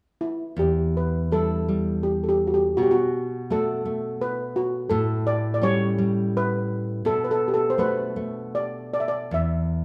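Longing and mournful, this short passage from a longer Celtic slow air unfolds in E minor at a loose, rubato pace around 77-86 BPM in 3/4. A steel pan carries the melody from 0.2 seconds, its metallic, shimmering tone struck with medium rubber sticks and sitting airy and up front, moving between E4 and E5. A fingerpicked nylon-string guitar joins at 0.6 seconds with a full-bodied, deep classical accompaniment ranging from E2 to G4, also placed close to the listener. The harmony drifts from Em7 through Bm7 and A7 back to Bm7 before settling on an open E7 chord near 9.3 seconds. A moderate recital hall reverb surrounds both instruments, lending the slow, plaintive air a sense of space.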